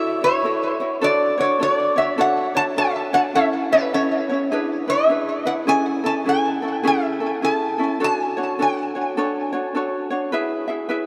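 Hawaiian music in A major at 103 BPM, swung in 4/4 with a relaxed, sunny mood, this short passage is cut from a longer piece. A lap resonator guitar carries the melody up front, played with slide and fingerpicks, its tone metallic and nasal yet mellow, with tape echo trailing its phrases until it stops at 10.1 seconds. A fingerpicked ukulele accompanies from the start, light and warm, running on until 11.1 seconds. The harmony moves from A6 through Dmaj7, A, E7 and Amaj7 before returning to Dmaj7 and settling on E at 10.3 seconds. A huge ambient reverb soaks the mix, giving the whole a dreamy sound.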